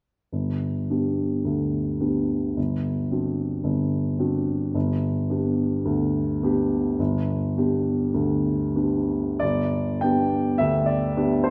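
Classical romantic character piece for solo piano in G major, hopeful and passionate, with a warm, woody upright piano sounding open and up front in a reverberant recital hall, moving with rubato between 87 and 112 BPM in 4/4 over a G to D7/G and back to G progression, its opening section giving way to a new one at 9.4 seconds before this excerpt cuts off at 11.5 seconds.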